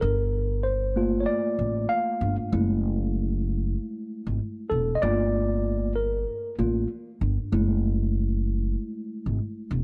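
A worn, slightly out-of-tune tine electric piano takes the solo across the whole 9.8 seconds of this excerpt, its mellow, clean tone sitting up front as it moves between Gm9 and F#m9 every 2.5 seconds. Beneath it, a growly, woody upright bass played pizzicato on steel strings holds the low end, also close and present. The jazz-hop groove runs at 96 BPM in 4/4 with a lazy 16th-note swing, and light reverb with small-room ambience gives the whole thing a smoky, nocturnal feel.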